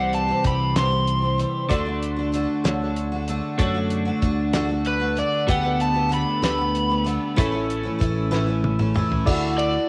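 An overdriven slide guitar opens this folk rock and heartland rock excerpt, sitting up front over shimmering, octave-doubled picked twelve-string acoustic guitar, a clean, compressed twelve-string electric guitar riff, and round, fingered electric bass, with a damped 70s drum kit joining almost at once. The mood is open-road and warm, a 6/8 at 64 BPM in D major with a straight feel, moving from C through D, Gadd9/D and A before landing on Dadd9. The slide guitar carries the melody with tape echo, falls silent at 1.4 seconds and returns at 4.9 seconds. Meanwhile a dark, woody upright piano with short sustain slips in quietly in the background. The drums are dry and mid-forward, with a fat snare, tight kick, hi-hat, ride, crash and toms, and they play a fill near the end. The slide guitar, both acoustic and electric twelve-strings, the drums and the piano carry a cassette-tape character, and the whole take has the light reverb and small-room ambience of a home recording.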